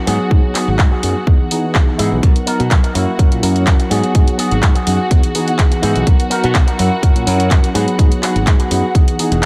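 Joyful and funky, this filtered disco house cut moves at 125 BPM in a straight 4/4, cycling through G#m7, Emaj7, Bmaj7 and F#7 across its roughly 9.5 seconds. A punchy electronic kick sits up front from 0.3 seconds, alongside a house kit of handclaps and bright hi-hats that enters just before it, both set in a small room ambience. A growly, bright fingered electric bass carries the low end, while a mellow tine electric piano with a phaser supplies the accompaniment. Lush, woody bowed strings hold sustained chords with gentle vibrato, and a twangy, compressed electric guitar picks a riff through an envelope filter. The bass, electric piano, strings and guitar all pump with sidechain and sit behind a low-pass filter, giving the groove its characteristic muffled, breathing disco-house sound.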